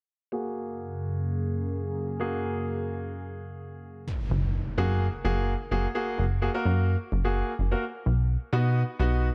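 This upbeat, euphoric pop fragment from a longer piece moves at 128 BPM in F# major. It opens at 0.3 seconds on an F#add9 chord, with a bright concert grand piano playing accompaniment beside a sweeping resonant pad of detuned sawtooth tone and chorus. A filter sweep runs through this opening, while the slow-attack, evolving pad holds sustained chords until about 4.0 seconds. At 4.1 seconds an electronic impact marks a new section, and a plucky analog bass enters soon after, punchy and funky with a fast, decaying filter pluck and a wave-folded edge. The polished, short-sustain piano carries on alongside the up-front bass to the close, with the harmony moving to B at 7.8 seconds. The production is dark overall, set in light reverb and digital ambience.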